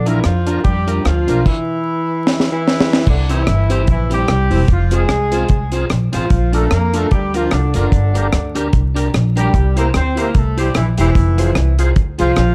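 Ska at 149 BPM in C mixolydian with a lightly swung, cheerful bounce, this short cut from a longer piece sets a dark, punchy horn section with slapback echo on the melody over a woody, thumpy pizzicato upright bass and a deep, dry reggae drum kit with a high-tuned snare and tight kick that plays a fill from 2.3 to 3.1 seconds, while a twangy, slightly broken-up electric guitar with its own slapback echo accompanies and a lightly overdriven tonewheel organ with chorus vibrato and slow rotary speaker adds stabs in the background, the whole mix sitting in a small-room ambience with vinyl crackle.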